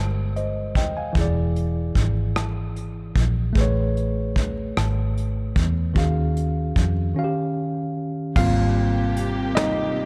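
A slow six-eight R&B groove at 50 BPM sets an intimate, sensual mood, with a worn, slightly out-of-tune tine electric piano and a round, foam-muted fingered electric bass playing up front over soft brushed drums in a small room through rich Abmaj9, Amaj9 and Ebm11 chords, pausing for a break at 7.2 seconds before the electric piano takes a solo at 8.4 seconds as a lush, bowed string section enters with sustained sul tasto chords, all set in a dark studio reverb.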